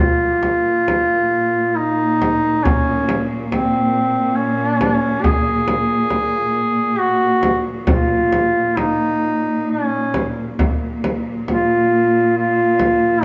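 A duduk carries the melody from the first moment to the end at 13.2 seconds, its soft attack and scooped notes giving this Caucasian folk lament a mournful, longing voice as it moves between C4 and Ab4. Beneath it, a symphonic string section holds a bowed drone on Bb2 throughout, its tone both biting and lush, with vibrato, and sitting closer and lower in the mix than the solo line. A deep frame drum played with soft hands enters at 0.4 seconds and stops at 13.0, adding a large acoustic presence with its own small-room character. The piece sits in Bb minor at 68 BPM in 3/4, though the rubato feel lets the pulse breathe freely. A concert hall reverb with a 2.2-second decay wraps the performance in spacious resonance. This is a single section cut from a longer piece.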